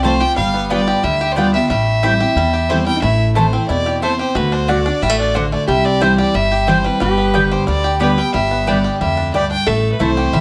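Bluegrass in a virtuosic, joyful mood, with a clear, focused bowed fiddle carrying the melody up front over full-bodied picked steel-string acoustic guitar with finger squeak, twangy fingerpicked banjo arpeggios, woody double-string mandolin stabs and a dark, thumpy pizzicato upright bass, while a nasal, metallic lap resonator guitar played with slide adds a second line from 3.0 seconds, all in a moderate studio reverb.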